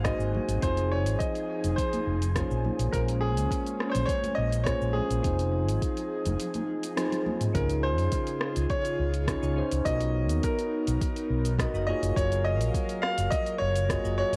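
A bright concert grand piano carries the melody in this relaxed, smooth sunset chillout piece at 104 BPM, over soft, detuned electric-piano-like synth keys with chorus and delay, a breathy, full-bodied pad, and a dark, round fretless bass sitting up front. Beneath them, a soft overdriven electronic kick and an R&B kit of hi-hat, rim click, shaker and toms provide the groove, while distant, high-tuned congas and a very quiet wind-like noise texture drift in the background until about 7.5 seconds. A drum fill and band accent at 7.0 seconds lead the harmony from minor sevenths into dreamier major-seventh chords, all set in a lush hall reverb with the warbling pitch drift of worn cassette tape.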